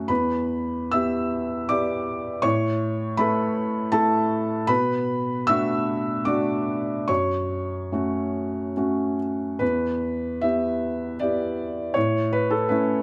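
Neoclassical minimalist piano in E dorian, this wistful, melancholic fragment from a longer piece moves in a rubato 3/4 at roughly 70-82 BPM. A felt-muted upright piano plays alone for the full 13 seconds, spanning E2 to E6 with a soft, mellow, intimate tone that carries a vintage character. The harmony moves through Em, A, Bm7 and F#m, then the opening phrase returns at 9.6 seconds, settling back on Em and A. Close, detailed microphones place the piano up front, and a light reverb adds a gentle sense of space around its muted voice.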